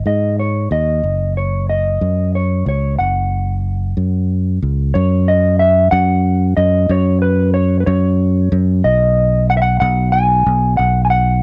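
A dark, clean electric guitar opens the melody at 0.0 s, its fingered line shimmering with harmonic tremolo and a cassette-tape tint, joined at 0.1 s by a round, direct fingered electric bass that sits up front. This hopeful, anthemic slice of indie folk moves in a straight 6/8 with a building arrangement, shifting into a new section at 4.9 s. The home-recorded sound carries a digital ambience and is cut from a longer piece.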